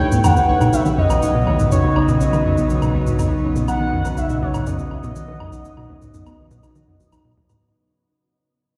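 Ambient, sequencer-driven space music at 122 BPM in 4/4, expansive and hypnotic, this short excerpt sits on a Badd9 chord and is fading out across its full 7.6 seconds, bathed in a huge, wet reverb that sounds as if played through a big system in a bare room. A nasal, expressive synth lead with vibrato, lush chorus and delay carries the melody up front until 7.1 seconds, over a morphing wavetable pad, a soft, round pluck with vintage 12-bit grit arpeggiating in the background, and a punchy, driving sequencer bass riff. Beneath them a deep sine sub bass holds a B with tube saturation, a bright, tempo-synced gated texture pulses quietly, and a small-room shaker and woodblock enter at 0.1 seconds with delay.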